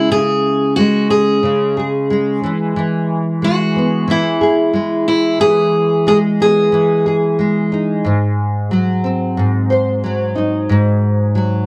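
A gently swung sixteenth-note feel at 91 BPM in 4/4 carries this wistful, tender acoustic pop passage, cut from a longer piece. A double-tracked nylon-string guitar, fingerpicked in a classical manner with fresh strings, provides the accompaniment throughout the 11.7 seconds, moving from C#m to E and arriving on G#7 at 8.1 seconds. Above it, a picked steel-string acoustic guitar carries a compact melody between E4 and G#4, with audible finger squeak and an auditorium-like character, until it drops away at 7.7 seconds and leaves the nylon guitar alone. Both guitars sit up front with a warm tone. The sound is dry and close, like a 1970s studio session, with a moderate, short booth ambience around the instruments.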